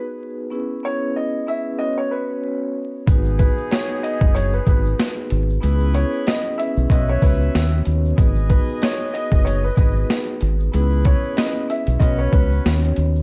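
A swung 94 BPM boom-bap groove in G# minor, reflective and gritty, opens on a woody upright piano melody with digital delay and a mellow vibraphone with soft mallets and slow motor vibrato, cycling through G#m7, C#m7 and Bsus2. At 3.1 seconds a pitched-down, overdriven sampler-style drum kit with a thumpy kick, high-tuned snare, rim click and hi-hat arrives up front with a round, punchy dub bass and a grainy egg shaker in the background. Loose, soft-attack jazz horn stabs with vibrato and delay sit low in the mix, while vinyl crackle and a small room give the dark production its warm character in this excerpt cut from a longer piece.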